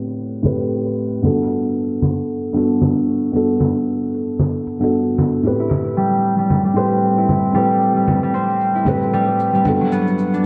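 A loping 114 BPM groove in 4/4 with a 58% swing on the sixteenths sets this short cut from a longer organic downtempo piece in A dorian, earthy and mystical in mood. Cabasa and congas carry the rhythm throughout, overdriven and electronic in character, re-recorded in a small room and dulled by low-pass filtering, with a filter sweep running across the whole passage. A felt-muted upright piano sits up front as accompaniment, soft and dark with thick felt, its action noise audible beneath a vintage 12-bit sampler grit and analog delay. At 5.6 seconds a concert harp enters with thumb-plucked, ringing arpeggios, close and present, also fed through analog delay. The harmony moves between Am7 and Gmaj7, and the dreamy mix is soaked in a lush hall reverb over a small room ambience, softened overall by a low-pass filter.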